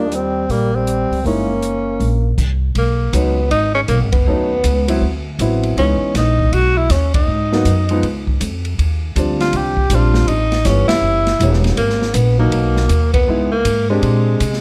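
A breathy tenor saxophone carries the melody up front with mellow vibrato, scooped notes and a soft attack in this relaxed, sophisticated slice of small-group swing and bop at 160 BPM in B major, cut from a longer piece. A whispered trombone second line sounds only until 2.3 seconds, while a woody, pizzicato upright bass drives throughout and an open drum kit with dark cymbals and a boomy kick swings from a small room. A concert grand piano joins at 1.3 seconds with intimate accompaniment, its action noise audible, as band accents punctuate rich extended chords under light reverb.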